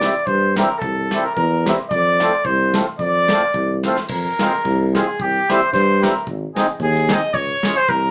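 Bouncy and jolly, this alpine folk dance-band piece moves in a swung 2/4 with a touch of rubato. A distant, roomy trumpet carries the melody up front in a classical style, while a reedy, full accordion supplies rich accompaniment until it drops out at 7.8 s. Beneath them, a mellow tuba with light vibrato holds down the bass in a similarly classical manner. A brushed drum kit with a dark, smooth tone, dark cymbals, a punchy kick and a rolled-off top sits lower in the mix, playing crash, kick and snare. The band sounds as if it is playing live in one modest studio room, heard through a small speaker, and the music moves into a new section at 4.1 s, with the chords shifting from C and F to Fm, C, Ab and Db in this short cut from a longer piece.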